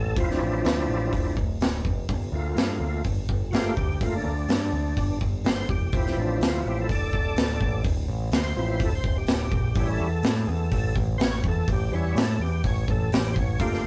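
A straight 4/4 groove drives this heavy, brooding blues rock power-trio fragment with a southern rock edge, as a gritty, thick overdriven tonewheel organ takes the solo through slow rotary-speaker chorus vibrato over Dm7, Gm7 and A7, a growling, round picked bass adds dark overdriven weight, and a punchy, up-front acoustic drum kit of kick, medium-tuned snare and hi-hat enters at 0.2 seconds, all captured with light reverb in a rough rehearsal-room sound.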